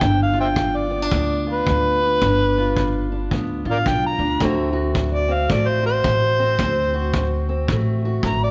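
Acoustic country blues with a gritty, soulful mood and a swung 4/4 feel, cut from a longer piece. An amplified, overdriven harmonica carries the melody as a solo from 0.0 to 8.5 seconds, sitting up front with light vibrato, tongue slaps and scooped notes in a jazz-inflected style. Beneath it, a dark, boxy parlour-style steel-string acoustic guitar is fingerpicked as accompaniment, while a woody, thumpy upright bass played pizzicato holds down the low end. A punchy kick drum played with brushes, recorded in a small room with a rolled-off top, sits mid-forward in the mix. The harmony moves from G7 to D7 at 4.4 seconds, and the whole is bathed in light reverb with the worn, warbling pitch drift of old cassette tape.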